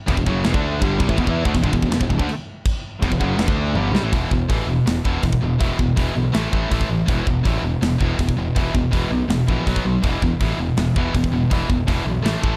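A straight 4/4 pulse at 163 BPM drives this dark, heavy metal excerpt in E minor, with a tight, up-front acoustic drum kit of firm kick, medium-tuned snare, hi-hat, toms and bright china cymbal, and a fill at 3.8 s. A bright, high-gain guitar riffs up front over a second distorted guitar further back, while a double-tracked, overdriven garage guitar adds a rougher layer until 4.1 s. A growly, overdriven picked bass anchors the power-chord movement through E5, A5 and B5 in a dry, dark mix.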